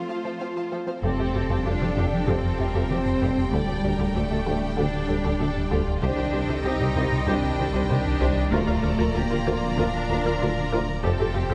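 A straight 4/4 pulse at 96 BPM carries this vast, tense hybrid orchestral and electronic film cue, cut from a longer piece: a swirling phased analog pad with chorus, a bowed cello section holding the bass, an expressive violin section on a second line, a viola accompaniment touched with portamento, and juicy, squelchy resonant blip-pluck arpeggios open the passage, and from 1.0 s a distant, lush violin melody, a mellow, soft-attack French horn section, a smooth gliding sawtooth synth bass riff, a very quiet double bass section, a thick saturated sine sub bass and a very quiet solo tuba join in beneath chords moving from Fadd9 through Dsus4, Cmadd9 and Bb/D, the whole ensemble sitting inside a moderate scoring-stage reverb.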